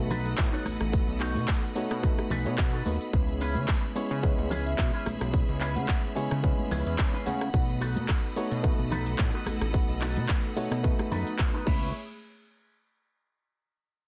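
A dense, heavily limited and dry mix carries this cosmic, sensual nu-disco excerpt at 109 BPM with a light swing, where a punchy, up-front electronic kick and a house kit with crisp hats, cabasa, handclaps, crash and rim clicks sit over bright tambourine, congas and bongos, a fat, detuned analog bass with tube saturation, a reedy, lightly overdriven electric piano with sidechain pumping and slapback echo, lush, distant bowed strings holding chords, and a twangy envelope-filtered guitar riff with chorus, joined by a clean guitar fill at 2.0 seconds and a mellow soft-mallet vibraphone melody with tape echo from 4.4 to 7.6 seconds over B7 and C#m7 harmony.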